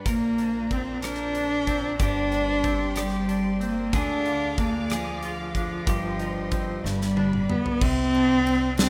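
A nasal, boxy bowed cello with vibrato carries the aching melody up front in this dramatic six-eight pop ballad in C minor at 62 BPM, over twangy, double-tracked clean electric guitar, a lush string section in the background that drops out at 7.8 s, woody pizzicato upright bass, and a huge arena drum kit with a punchy kick and bright cymbals that plays a fill from 6.8 s, with plate reverb on the cello, guitar and strings and analog delay on the cello in a rough home-demo mix cut from a longer piece.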